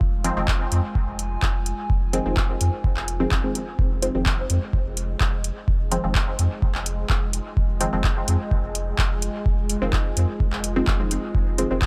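Dub techno at 127 BPM in F minor, this hazy, hypnotic excerpt from a longer piece sits on an Fm7 chord. An overdriven analog kick and a booming drum machine with metallic hats and handclaps ride over a round, sine-like sub bass, while muted, detuned sawtooth chord stabs with a filter sweep and dub echo join at 0.2 s over a moody, square-and-sawtooth pad, both bass and upper parts pumping against the kick. From 3.8 s a resonant, bubbling stepped-filter texture with its own reverb drifts in the background, all in a dry, close sound.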